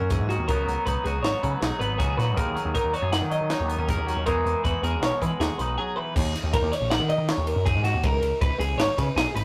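Math rock with a midwest emo flavour, this playful, bright passage is cut from a longer piece and moves in a straight-feeling 5/4. A bright, compressed twelve-string electric guitar spins arpeggios high over the band, while a clean, twangy electric guitar adds accompaniment until it drops out at 6.2 s. Underneath, a picked electric bass growls with overdrive, its warm, amped tone sitting up front. A crisp acoustic fusion kit enters at 0.1 s, with a high-tuned snare, punchy kick, hi-hat, ride and crash pumping in a small room. The harmony drifts through lush chords such as C#9sus4, Bmaj9/D# and Emaj9 before shifting at 6.1 s to D#m7 and a bare C#5, captured in a rough rehearsal-room recording with tube saturation and a short room reverb.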